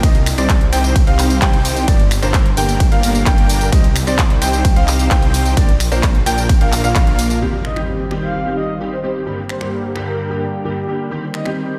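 Festival progressive house in an anthemic, euphoric mood, taken from a longer piece and opening straight into a drop over a straight pulse. A huge, thick supersaw riff carries the drop alongside clear grand piano arpeggios, both pumping against the sidechain with delay trails, while a saturated, detuned saw bass with chorus anchors the low end. A punchy, tape-warm electronic kick sits up front until 7.0 seconds, and a layered big-room kit of finger snaps, handclaps, hi-hat, ride cymbal and tambourine runs on beneath. At 7.4 seconds an electronic impact marks the shift to a new passage, where an intimate piano with audible action noise plays accompaniment beside a warbling, vintage unison pad holding sustained chords. A breathy, flute-like synth lead with a cassette-tape tint and delay then carries the melody, and the whole mix is soaked in a dreamy hall reverb.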